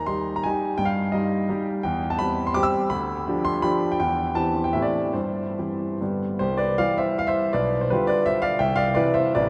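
A solo concert grand piano opens this brief fragment of a romantic classical piece, a graceful, rustic dance in 3/4 with dotted rhythms, moving between 136 and 183 BPM with free rubato. It is in C major, tuned to A4 = 442 Hz. The opening harmonies lean toward the minor, with Cm/Eb and Eb/G, before settling into bright C major colours and a G7/D, Am7 and G. The piano sounds intimate and polished, with deep bass down to A1, audible action noise and long sustain, sitting up front while reaching as high as E6. A fresh section begins at 6.4 seconds, turning on C, G7/B and C before the fragment ends at 9.5 seconds. The whole performance rings out in a vast, echoing cathedral space whose wet reverb lingers for 5.1 seconds.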